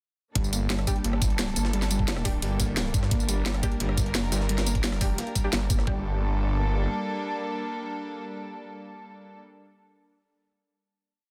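A snarling, overdriven saw bass growls in chopped phrases through this tense, aggressive dark technical drum and bass piece, driven by a knocking electronic kick, a tight kit of cracking snare, bright hats, rim and tambourine, and a very quiet, gritty jungle breakbeat loop, while a soft, round pluck arpeggio with lush chorus and delay drifts against the bar over gut-toned strings holding sustained chords, and sparse, bright orchestra-hit-like stabs echo in the background, carrying on past the final chord section from 5.9 to 8.6 seconds.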